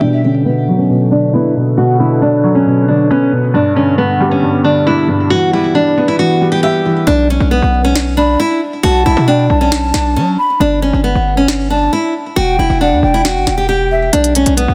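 A full-bodied, fingerpicked nylon-string guitar carries the melody with delay through this eerie, brooding trap excerpt in B minor at 136 BPM in half-time, first over a soft, felt-muted upright piano with audible action noise and a dark, warbling tape-like pad beneath a filter sweep, then from 7.1 seconds over a punchy, heavy 808-style bass, with a sharp-snared electronic drum kit arriving at 8.0 seconds and a hollow, airy jazz flute with vibrato adding a second line, set in light small-room reverb and a dense, heavily limited modern master.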